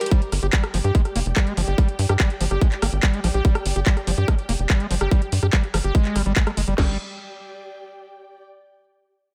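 Digital ambience surrounds this driving, hypnotic psychedelic trance excerpt at 144 BPM in 4/4: an up-front electronic drum kit with a tight kick, cracking snare, crash cymbal, metallic hats, handclaps and rim clicks pushes beneath a punchy sawtooth sequencer bass with a plucky filter, a squelchy, aggressive acid line screams through distortion, chorus, delay and sidechain pumping, and a dark, veiled string section, bowed con sordino with vibrato, pumps in the background and fades out before carrying on alone from 7.0 to 8.4 seconds.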